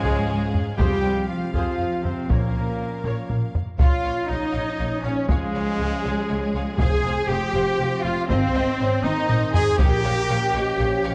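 Cinematic, epic orchestral film score in a dark, heroic mood at 80 BPM in 6/8 and Bb dorian, cut from a longer piece, with hard-stick taiko drums close and dry up front and fills at 3.0 and 9.0 seconds, beneath lush bowed strings: a rich violin melody and a second violin line set in the background, very quiet violas with portamento, smooth cellos and soft-attack double basses on the bass; mellow French horns and trombones hold sustained chords, a clear solo trumpet adds stabs, calf-head timpani sound in the background, and a hollow, pure flute section joins with a second line at 3.8 seconds, in a warm production with moderate scoring-stage reverb.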